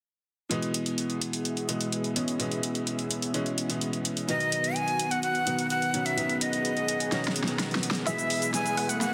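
Festival progressive house with an uplifting, triumphant mood, heard here as a short cut from a longer track. From the start, a brilliant grand piano with tape echo carries the accompaniment up front. A lush, detuned sawtooth pad holds sustained chords under chorus, phaser and vintage 12-bit sampler grit, with a filter sweep running across it, while an overdriven big-room electronic kit with a huge snare, hi-hat and shaker drives the groove. At 4.3 seconds a breathy jazz flute with crisp chiff and vibrato takes the melody, its tape echo trailing behind. A drum fill leads into a build-up at 8.1 seconds, where a thick, compressed supersaw riff enters through a low-pass filter and a punchy pluck plays arpeggios in the background, both carrying filter sweeps. A background riser joins at 8.5 seconds, and the dense, heavily limited master sits in a moderate digital room reverb.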